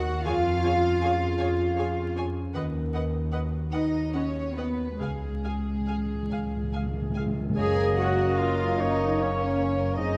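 Steeped in a wet scoring-stage reverb with vinyl crackle, this serene, warm excerpt of a slow romantic orchestral movement in 6/8 and F# major drifts with rubato at 46-54 BPM: soft sul tasto strings carry a floating second violin line, a shadowy violin melody set back in the mix, intimate viola accompaniment, close cellos and up-front double basses over a ringing, thumb-plucked harp, a timpani fill with medium mallets enters at 5.0 s, and an airy, hollow flute ensemble arrives at 7.5 s just before a clear oboe, a mellow clarinet, a distant bassoon and sustained French horn chords join at 7.6 s on the F# chord.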